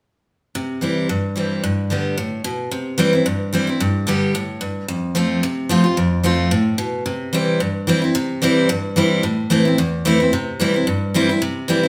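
Bluegrass at a brisk 221 BPM in 4/4 with a light swing on the eighths, this joyful, virtuosic passage in C major, cut from a longer piece, features a bright, full-bodied picked dreadnought steel-string acoustic guitar playing alone and up front from 0.6 to 11.9 seconds, moving through C, G, F and A minor over a range from E2 to G4, set in a wet studio reverb that places the listener further back in the room.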